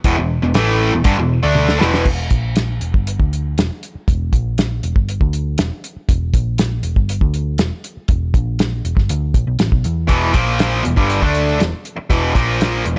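Driving and swaggering, this classic rock passage is cut from a longer piece and moves in a straight, steady four. A cloth-damped drum kit sits up front with a thuddy, dry, dark character: a fat snare, a tight kick, smooth, dark cymbals and a rolled-off top, with hi-hat, crash and toms filling out the kit. A bright, overdriven, double-tracked electric guitar plays a picked riff at the start, drops out at 2.0 seconds, and returns at 10.1 seconds as the harmony moves through A#5 and Em. Underneath, a hollow-body short-scale electric bass holds down the low end throughout with a round, amped tone. A drum fill at 1.6 seconds carries the opening into the longer second section, and studio ambience surrounds the whole band.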